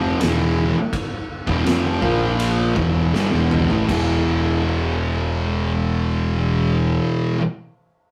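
A thick, double-tracked fuzz guitar sits up front, grinding out a heavy, hypnotic stoner and doom metal riff over E5, A#5 and Em chords at 80 BPM, backed by a growling, round overdriven bass and an oversized low-tuned acoustic drum kit with a punchy kick, fat snare and dark cymbals in a pumping stone room, which slows down, plays a fill from 3.1 to 3.9 seconds and drops out at 4.1 seconds, all caught in a rough, tube-saturated rehearsal-room recording.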